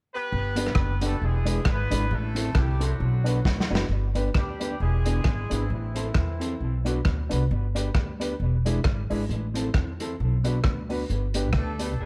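Cheerful, joyful ska at 133 BPM in G major with a swung 4/4 feel, where a dark, distant horn section carries the melody with octave doubling and tape echo from 0.1 to 7.0 seconds and returns briefly at 11.6 seconds, over an up-front, woody, thumpy pizzicato upright bass, a clean, fingered mellow electric guitar and dark, mellow piano stabs both touched with tape echo, and a lo-fi vintage drum kit of hi-hat, kick, rim click and snare that plays a fill at 3.5 seconds, all cycling through G, E7, Am and Bm in a dry, close sound in this cut from a longer piece.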